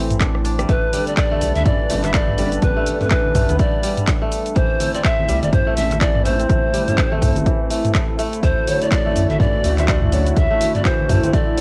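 A hazy, cassette-saturated home recording with a moderate studio reverb gives this afro house excerpt a soft, spiritual glow, with a swung sixteenth-note feel. A detuned, warbling analog pad holds sustained chords under a gentle chorus, while a fingerpicked kora ripples through crisp, ringing arpeggios with tape echo. Both breathe with sidechain pumping, as does the deep, round sine sub bass. A punchy, up-front electronic kick anchors a tape-softened house kit of hi-hat, handclaps, finger snaps, rim click, cabasa and toms, which opens with a drum fill from 0.2 to 0.7 seconds, and very quiet congas played with soft hands sit distant in a large room. At 0.7 seconds a breathy, reedy bamboo pan flute enters with vibrato and a chiffy attack, carrying the melody through tape echo as the harmony moves from Am through G and back to Am before landing on D7.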